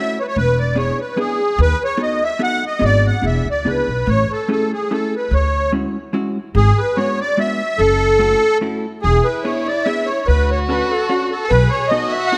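A reedy, shimmering musette accordion carries the melody up front in this nostalgic, charming swung waltz at 146 BPM, over a dark, clean, picked hollow-body electric jazz guitar and a woody pizzicato upright bass, with a single bowed violin adding an expressive second line with vibrato and portamento from 9.1 seconds, all set in a moderate scoring-stage reverb in this excerpt cut from a longer piece.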